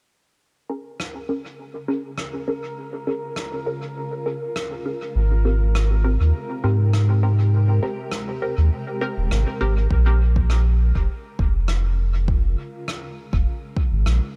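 This meditative, hazy ambient dub excerpt opens at 0.7 seconds with a muted, filtered chord stab that carries a phaser, lush chorus and dub echo, while a filter sweep moves across it. A bubbling texture of random, resonant filter steps follows almost at once, and a blurred, evolving granular pad fades in beneath on sustained chords, both softened by built-in reverb. A distant rim click with a rolled-off top ticks through the piece with its own dub echo, lightly swung over a Bbm7 chord. At 5.2 seconds the harmony shifts to Abmaj9 and a round, sine-based sub bass arrives up front, giving the haze a deep floor. Once the stab and bubbling texture drop away, a tape-warm electronic kick drum enters at 9.9 seconds as the music returns to Bbm7, leaving the pad, bass, rim click and kick in a digital ambience until the cut.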